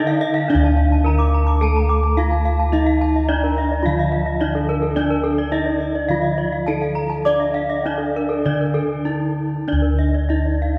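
Round, mellow bossed gongs sit up front carrying the bass in this hypnotic, shimmering Balinese gamelan excerpt, beneath a bright, horn-mallet bronze metallophone melody, two more ringing metallophones weaving arpeggios, one of them airy, a soft, padded-mallet metallophone accompaniment in the background until 9.7 s, and the pure bamboo tone of a bass bansuri holding a second line until 9.2 s, all set in a long, wet church reverb.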